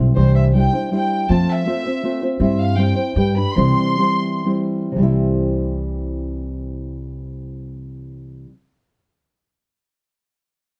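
Proud and festive, this short cut from a longer mariachi-style Mexican folk piece in C major moves in a rubato 3/4 between 113 and 164 BPM, with a dark, thumb-plucked nylon-string guitar up front carrying the accompaniment, finger squeak and all, alongside a woody, thumpy pizzicato upright bass, while a reedy, gut-string chamber violin section with a distant, period-style sound and plate reverb bows the melody from 0.2 to 4.5 seconds over chords moving from Cadd9 through F and G back to C, the tempo slowing from 2.4 to 5.0 seconds before the guitar and bass carry the closing section.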